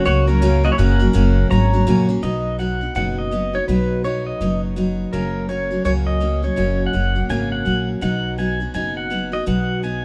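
A clean, compressed pedal steel guitar carries the melody up front, its fingerpicked slide lines blooming on volume swells over an easygoing, down-home country groove at 166 BPM in B major with swung eighths. A bright, full-bodied dreadnought acoustic guitar picks the accompaniment, with a hint of finger squeak, while a woody, thumpy pizzicato upright bass enters at 0.1 seconds. Light reverb surrounds this short cut from a longer piece, which moves between F# and B chords, shifting to B at 2.2 seconds.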